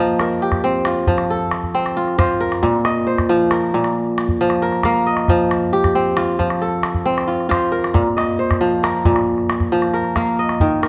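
Warm and hypnotic, this fragment of West African traditional music in 12/8 centers on a mellow, fingerpicked kora whose crisp, ringing arpeggios sit up front and sway between F and Bb5 chords. A small acoustic calabash joins at 0.2 s, lower in the mix and carrying a small-room character. The passage is bathed in moderate recital hall reverb and marked by the worn, warbling pitch drift of old cassette tape.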